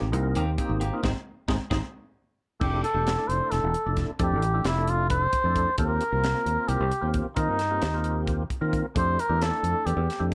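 Dark and warm with light reverb, this short cut from a longer electric jazz fusion piece moves in a straight 7/8 at 265 BPM in F major, funky and soaring in mood. A twangy, scooped clean electric guitar with subtle chorus punches out stabs only until 1.8 seconds, while a growly, bright fingered bass sits up front from the start alongside a tight funk kit with a high-tuned snare, a tight kick, hi-hat and crash. A percussive tonewheel organ, lightly overdriven through a slow rotary speaker with chorus vibrato, fills in full accompaniment, and the band hits an accent together before a drum fill around 1.9 seconds leads into the next section. At 2.6 seconds a cup-muted trumpet takes the solo melody, veiled and breathy with light vibrato and a soft attack, its smooth top bathed in plate reverb. Underneath, the harmony moves from Abmaj9 to Fmaj13, through Eb69 and back to Fmaj13.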